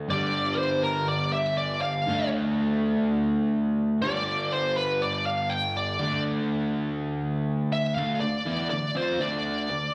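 Heard through a club's PA at a live gig, this short rock clip carries a light, digital-sounding reverb along with the club's own ambience. At 122 BPM in a straight 4/4 and set in D minor, the mood is driving and heavy. A crunchy, double-tracked electric guitar sits up front with a riff, its warm picked tone touched by slapback echo as the harmony moves between G5 and D5 power chords. Over it, a smooth, bright lead guitar, also picked and overdriven with the same slapback echo, carries the melody in a high register from Bb4 to G5. At 8.0 seconds the music shifts into a new section on a D minor chord before the clip cuts off at 9.9 seconds.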